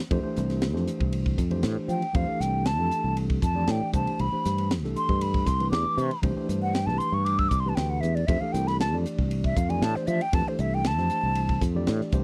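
A mellow tine electric piano, a growly, sustaining fretless bass and a crisp, punchy drum kit with a high-tuned snare, hi-hat and ride open this slick, straight 117 BPM jazz fusion passage in F lydian, moving from Fmaj9 to Cmaj9 and back. At 1.9 seconds a breathy, hollow silver concert flute takes the soaring melody, close-miked with vibrato, tongued notes and a slapback echo, running to 11.6 seconds. The dry, close 1970s-style studio sound keeps the flute, bass and drums up front, with the clean electric piano sitting behind them in this section cut from a longer piece.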